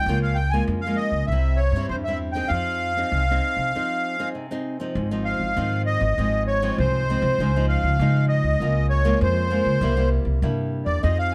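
Nostalgic yet lively, this short cut from a longer samba and choro piece sets a reedy, sweet accordion melody with light tremolo tuning and plate reverb up front over fingerpicked classical nylon-string guitar, where a finger squeak can be heard. A woody pizzicato upright bass sits prominently beneath them, and after a break at 3.7 seconds the accordion takes a solo from 5.0 seconds in a gently reverberant room.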